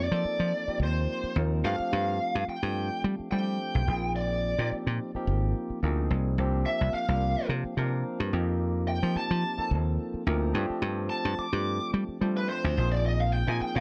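A dark, bluesy overdriven electric guitar takes a picked solo up front across the whole 13.8-second excerpt, riding a bright, funky jazz groove at 108 BPM in 4/4 with a light swing on the sixteenths. Beneath it, a punchy, foam-muted thumbed slap bass sits dry and direct at the front of the mix, while a barky, clean tine electric piano with subtle chorus comps through a cycle of F9sus4, G9sus4, Bb9sus4 and C9sus4 chords. Light reverb and a dark, warm production round out the sound.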